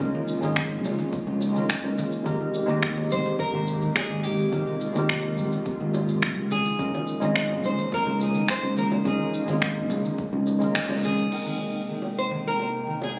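A tine electric piano with digital delay and an airy, breathy pad with chorus and 12-bit sampler grit open this relaxed sunset chillout excerpt at 106 BPM in Ab major, over a growly fretless bass, an up-front deep house kit with cabasa, crash and finger snaps, a deep tape-toned electronic kick, and very quiet congas and bongos. A bright, fingerpicked nylon-string guitar enters at 3.1 s carrying the melody through a delay, moving between Db6/9 and Abmaj9 chords. After a band accent at 10.8 s, the bass and drums stop, leaving the piano, pad, guitar and hand percussion to ring in a moderate stage reverb with phone-captured room ambience.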